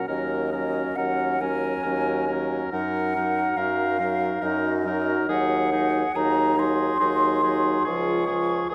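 An airy, hollow flute with crisp attack and vibrato sings the melody over a smooth-topped oboe second line, a clear, roomy French horn and a distant clarinet, with a bassoon bass joining at 0.1 seconds, in this serene, warm fragment of a slow romantic wind quintet movement at 70 BPM in a rubato 3/4, moving from D#m7 through D#m/F# and G#7/D# to C# in a moderate recital hall reverb.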